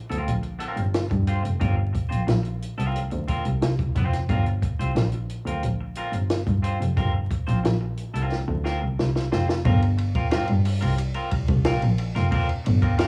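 Opening on a Gm7 chord, this sly, driving funk excerpt in G minor at 90 BPM pairs a bright, twangy picked electric guitar with cassette-tape coloring, an up-front bowed double bass with airy, boxy vibrato, and a dry compact cocktail kit with dark cymbals, a high-tuned snare and punchy kick, playing a drum fill from 8.3 to 9.6 seconds into a new section, all heard through light studio reverb, small-room ambience and vinyl crackle on a home cassette recording.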